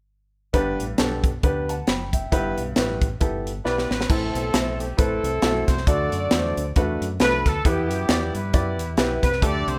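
A rough home-demo sound in a small room frames this soulful, uplifting uptempo gospel cut in G major at 135 BPM with a swung feel, where a clear, woody upright piano, a round, punchy fingered electric bass and a crisp fusion drum kit with dark cymbals and a high-tuned snare all start at 0.5 seconds, a drum fill at 3.7 seconds ushers in a new section, and a smooth-topped horn section with light vibrato carries the melody from 3.6 seconds over chords moving from G and Em/G to Am, D and Em.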